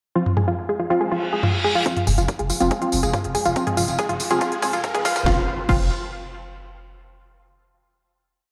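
A bright, chorused analog pluck repeats a three-step loop that drifts against the bar, joined at once by muted, detuned dub chord stabs through a phaser and a techno drum kit of cracking snare, smooth filtered hats, tambourine, toms and crash, opening this hypnotic, driving peak-time techno piece at 141 BPM in F minor, set in a dreamy hall reverb. A reverse cymbal at 1.2 seconds leads into the build, where an overdriven four-on-the-floor kick arrives at 1.9 seconds and a round sine sub bass rumbles between the kicks, pumping with the pluck and stabs, while a riser runs underneath and a drum fill begins at 3.6 seconds before the final chord arrives at 5.3 seconds.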